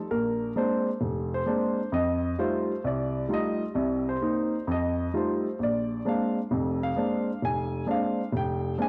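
Playful and sophisticated, this brief solo jazz excerpt swings at 131 BPM in 4/4 on an intimate, up-front baby grand piano with audible action noise and cassette tape colour, spanning F1 to Ab5 through Bb9, F9, Cm7 and back to Bb9 over 8.9 seconds in a home recording bathed in moderate spring reverb.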